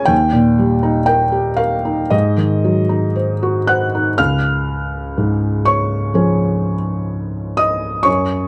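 A felt-muted upright piano plays alone, soft, mellow and vintage in tone with its action noise audible and placed up front by close, detailed microphones and light reverb, in this hopeful, intimate neoclassical minimalist piece, taken from a longer work, moving in a rubato 4/4 around 57-64 BPM across a span from Db2 to Gb6 as Eb and Ab7 chords give way to Db major at 4.2 s, the piano continuing until the excerpt is cut at 8.5 s.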